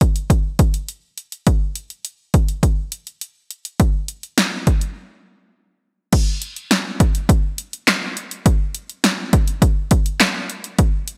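A punchy, overdriven analog drum machine sits up front in this wistful yet upbeat pop excerpt, driving a straight 4/4 groove of kick, snare, handclaps, hi-hat and crash cymbal through gated reverb and a short room on the snare, claps and hats, set in a digital ambience, with a break at 5.0 seconds before a new section begins at 6.1 seconds.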